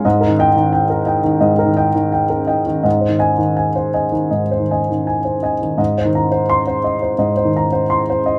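Neoclassical minimalist piano in 4/4 at a rubato 81-88 BPM, peaceful and intimate, played by a lone dark upright piano that sits up front, its woody, mellow tone carrying a vintage character and audible action noise. The harmony moves from Eb/Ab to Ab at 2.8 s, then to Abadd9 at 5.8 s, where the opening phrase begins again, all within a range from Ab2 to C6. A moderate small-room reverb and a soft top end that rolls off above 10.5 kHz keep this short cut from a longer piece close and peaceful.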